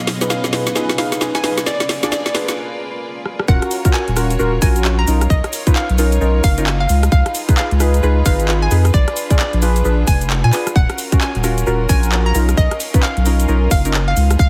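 Heavily compressed, radio-like sound with light reverb frames this skippy, soulful two-step UK garage excerpt, where a hollow, bouncy square pluck carries the melody over warbling, vintage chord stabs with chorus and tape echo, a clear violin section holds sustained chords in the background, a cloudy granular pad drifts only until 2.6 s, and the garage kit's woody snare, metallic hats, claps, rim clicks and shaker build up through a fill and a break until the saturated sub bass and tight, up-front electronic kick land at the drop at 3.5 s.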